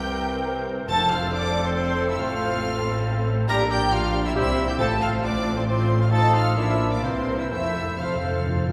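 Awash in the reverberant glow of a concert hall, this graceful, cheerful excerpt from a classical-period orchestral movement in flexible triple time sets its melody on a rich, focused violin section with vibrato, supported by a second violin line, airy bright flutes, a warm clarinet and a distant oboe, while smooth violas and a very quiet bassoon form the accompaniment, a punchy trumpet adds stabs, clear cellos and intense double basses anchor the bass, a hushed French horn section holds chords from 0.9 to 7.7 s, and hard-mallet timpani strike at 0.9 s before a closing fill at 7.5 s.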